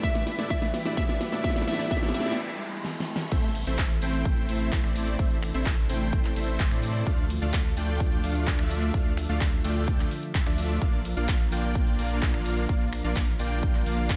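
Powerful and anthemic, this festival progressive house cut in A minor at 128 BPM opens with a build-up where a hollow, bouncy square pluck sings a brief melody through chorus and tape echo until 2.3 seconds, a riser and noise sweep climb in the background, and drum fills and a short break lead into the drop at 3.3 seconds. Throughout, a huge, detuned supersaw riff with tape echo, a deep saturated sine sub bass and a lush, warbling vintage pad all pump against a punchy, up-front electronic kick and a big-room kit with a huge snare, handclaps, finger snaps, shaker and crash, moving from Em through Am, Dm and Bb in light digital ambience.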